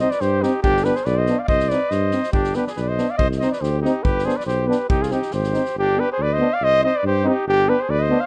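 A rough home-demo mix with studio reverb and a dulled top frames this restless, virtuosic Balkan brass band excerpt at 141 BPM in 2/4, with a swung sixteenth feel in C harmonic minor, where a smooth, mellow flugelhorn carries the melody up front over a warm trumpet second line, a clear trombone with light vibrato in the background, a soft-topped euphonium and a dark, punchy tuba bass, all in classical style, while an acoustic small-room drum kit played with bundle sticks sounds kick and snare over the alternating Cm and G chords until it drops out at 5.7 seconds.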